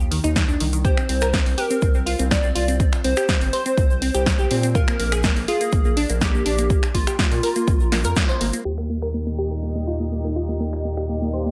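A straight 4/4 groove at 123 BPM drives this euphoric, expansive progressive house excerpt in Eb major, built on an up-front deep electronic kick, a deep house kit of finger snaps, low-pass-filtered hi-hat and punchy snare, and a grainy egg shaker sitting in the background. A round, dark analog bass with tube saturation and a glassy, crystalline wavetable pluck spinning chorused, delayed arpeggios both pump against the sidechain, while a bright, catchy unison lead carries the melody with delay from 0.8 to 8.6 seconds. At 8.7 seconds a filter sweep begins on the arpeggios, and soon after a lush, thick pad of sustained chords with chorus, phaser and sidechain pumping enters, the whole mix dreamy and soaked in plate reverb.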